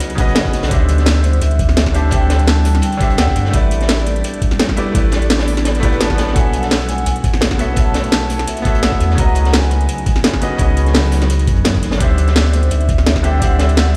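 Warm and lush, this excerpt from a longer liquid drum and bass track moves at 170 BPM in 4/4 with a light 16th-note swing. A bright, brilliant concert grand piano carries the accompaniment through dub echo, moving through suspended ninth chords from C#9sus4 to D9sus4, A9sus4 and B9sus4, while a glassy, ethereal FM pad with ensemble chorus sits in the background with slow-attack sustained chords. The low end is held by a deep, full sub bass with octave, mellow and up front from 0.6 seconds, beneath a gritty, thumpy electronic kick drum. Two kits share the groove: a layered electronic drum and bass kit with a cracking snare and metallic hats, and a dark, saturated breakbeat kit with a high-tuned snare and a rolled-off top, its hats, snare and room high-pass filtered. A metallic, ringing vibraphone played with medium hard mallets and fast motor vibrato carries the melody from 1.2 seconds, echoing in dub style, and a faint electronic swell sounds in the background around 5.8 seconds. 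The mix has light small-room ambience and the roomy character of playback on a big sound system in a bare space.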